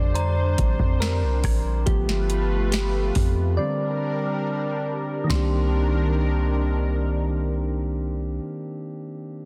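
Moody and late-night, this slow contemporary R&B excerpt at 70 BPM in C dorian features soft, round electric-piano-like synth keys that solo through the first 5.3 seconds over a chorused, phased, pumping lush pad, a deep boomy 808-style bass and a booming analog drum machine with crisp snare and metallic hats that drops out at 5.5 seconds after a break, while a faint inharmonic synth chime with tremolo and tape echo rings in the background, all in a dry, dense, heavily limited modern mix that moves from Bb69 and G9 chords to a closing Cm9.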